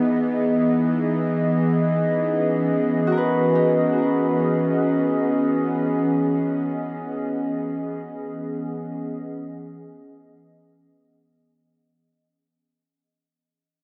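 Ambient music in free time and E lydian, this weightless, peaceful excerpt is cut from a longer piece and sits in a huge, wet reverb with an 8.4-second tail. Up front, a warbly tape-like pad holds sustained chords on Emaj9, its detuned, wave-folded tone dark and nostalgic with a lo-fi, vintage character, thickened by chorus and its own reverb. Beneath it, a bowed-like drone sounds low and string-like, a tense sawtooth-and-noise texture with ring modulation and vibrato that adds a faint edge to the calm. From 3.1 to 7.9 seconds a Celtic harp plays bright, ringing arpeggios, trailed by a diffuse ambient delay. The drone fades gradually across the whole excerpt, the music fades out from 5.8 seconds, and the pad and drone carry the piece to its close near 11.9 seconds.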